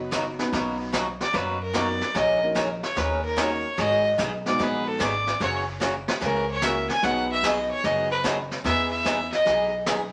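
Cheerful and down-home, this clip of a longer western swing tune moves at 148 BPM in 4/4 with a loping swung eighth-note feel in B major. A clear, nasal fiddle carries the melody up front, bowed by one player with light vibrato and an earthy, smooth top, and takes a solo from 0.5 seconds to the end. Beneath it, a bright, boxy picked acoustic guitar and a woody upright piano supply swing accompaniment over jazzy changes that move from Bmaj7 and Bmaj9 through G#m7 and F#7 to Emaj7. An upright bass plucked on gut strings adds a dark, thumpy low end, while a brushed drum kit with a high-tuned snare, boomy kick and rolled-off top sits in a small-room sound. Moderate studio reverb gives the ensemble a cozy sense of space.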